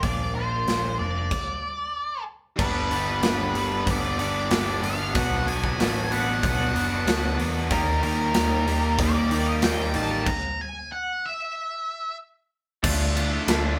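A live band sound fills one room with moderate reverb in this dark, cathartic stretch of quiet-loud alternative rock, cut from a longer piece and moving at 94 BPM in a straight 4/4. The big acoustic drum kit sits up front with bright cymbals, a punchy kick and a medium-tuned snare. A growly, overdriven picked bass holds the low end, while a twangy, lo-fi guitar through a small old amp plays arpeggios in the background. Up front, an octave-fuzz lead guitar carries the melody with a warm, distorted tone, and from 2.6 s a cranked, double-tracked stack guitar adds a bright, overdriven riff. The band halts for stops at 1.3 s and again at 10.3 s, and the harmony moves through Bb, G, Bm and Eb before settling on Dm.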